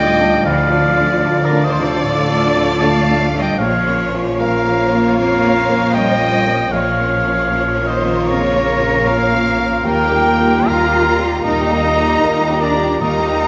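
Sorrowful and bittersweet, this cinematic film-score excerpt unfolds in a free, rubato 4/4 as a soft-attack, expressive violin section carries the melody in the background. An airy, distant flute, a lush second violin section and a close-miked solo cor anglais, the most prominent voice, add second lines around it. Beneath them a clear, very quiet viola section and a muted, intimate felt upright piano accompany, mellow French horns hold sustained chords and a ringing harp adds faint arpeggios, while rich cellos and double basses anchor the bass through Dm, Bbm and Ebadd9 in a moderate scoring-stage reverb.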